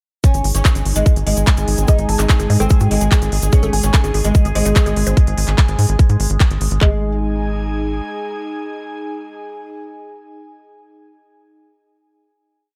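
A driving four-on-the-floor kick and claps from an up-front garage kit drive this intense, hypnotic psychedelic trance piece at 146 BPM. Tape-warm hats from a techno kit, a grainy shaker in hand-played sixteenths and a tight, punchy sequencer bass rolling sixteenth notes with tube saturation run alongside a plectrum-plucked oud repeating a riff through phaser, tape echo and sidechain pumping. An evolving, warbling wavetable pad, an airy breathy pad with chorus, a woody wave-folded pluck tracing an accented acid line in the background from 1.9 s and a very quiet formant-sweep wobble bass in short answering phrases fill out the groove before a final chord from 6.8 s.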